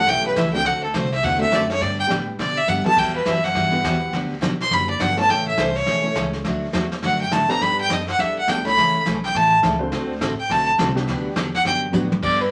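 Cheerful and down-home, this brisk 207 BPM western swing excerpt in G major features a clear, up-front fiddle soloing over jangly, detuned honky-tonk piano, woody pizzicato upright bass, bright picked dreadnought acoustic guitar and a vintage brush kit with dark cymbals and fills at 2.7 and 11.9 seconds, all in a wet studio reverb, before a rich, biting second fiddle line enters at 12.2 seconds.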